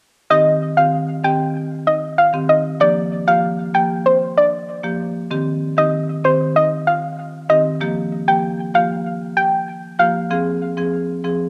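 Sultry and tough, this dancehall fragment, cut from a longer piece, moves at a straight 96 BPM in C minor over chords that swing between Cm and Gm7 before turning to Fm near the end. A soft, round, dark pluck carries the melody up front, thickened by chorus, while a woody marimba with medium mallets on rosewood bars plays the accompaniment just as close, holding on after the pluck stops at 10.1 s until 11.4 s. Light reverb and studio ambience sit around both parts, and the cassette home recording lends the whole a taped grain.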